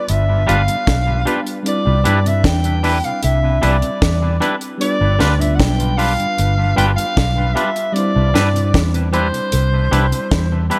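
A breathy soprano saxophone carries a whispered, intimate melody with vibrato and tape echo over a lush, dreamy FM electric piano with a soft pad layer, chorus and dub echo, opening this tender, smooth lovers rock reggae excerpt. A round, foam-muted fingered bass and a dry, up-front drum kit with a high-tuned snare and tight kick arrive at 0.1 s, followed by a very quiet, mellow tonewheel organ with key click and slow rotary speaker. Twangy, clean guitar stabs with dub echo join at 0.5 s as the harmony moves between G7 and Cmaj9 in a light studio ambience.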